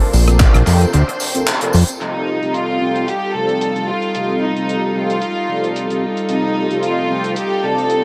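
This groovy, feel-good nu-disco excerpt moves at 112 BPM in 4/4 with a light 16th-note swing, set in F mixolydian over a Bbmaj9 chord that gives way to F9. A mellow synth brass part carries the accompaniment throughout, its detuned sawtooth and square tones dark and round with chorus, vibrato and analog delay. Beneath it a rich chamber string section holds soft, floating chords, pumping and filtered to sit close behind. A damped, dry 70s drum kit supplies handclaps, hi-hat and rim click with muffled hats and snare, while a punchy, layered electronic kick stands up front, and a distant tambourine echoes faintly in the background. A fat, detuned analog bass with a filter sweep sits up front from 0.1 to 1.8 s, and at 2.0 s a smooth, up-front studio violin section enters with a pure, bowed melody touched by analog delay, all within a small room's light reverb and an echo-heavy mix.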